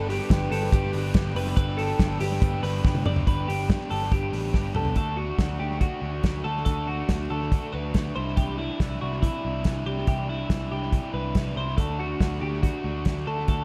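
An overdriven guitar, a bright, twangy twelve-string electric playing arpeggios, a round, foam-muted picked bass and a soft-attack analog pad with chorus open this breezy, youthful stretch of jangly indie pop at 141 BPM in D mixolydian, with the pad dropping out at 3.2 seconds. A loose, up-front acoustic drum kit with a fat snare and tight kick drives the straight 4/4 feel, adding fills before sections turn at 3.3 and 5.0 seconds, as chords move from G to D and Cadd9. Tape echo on the guitars and drums gives this short cut from a longer piece an echo-heavy sound in a small, lightly reverberant room.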